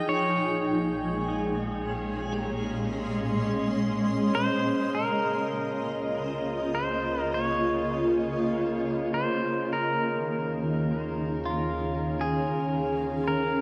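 Ambient music, peaceful and luminous, this excerpt opens with a blurred, full-bodied granular cloud pad up front beside a bright, twangy pedal steel guitar that carries the melody with fingerpicked slide and volume swells through tape echo. A clean electric guitar picks arpeggios from 0.4 seconds, while a deep, ominous, warbling drone rumbles in the background and a reversed, dreamy swelling texture hovers until 5.0 seconds, when a reedy, breathing pedal harmonium takes up a low drone. The whole is bathed in a long cathedral reverb as the chords drift from Bbm11 to Db69 and then Eb9sus4.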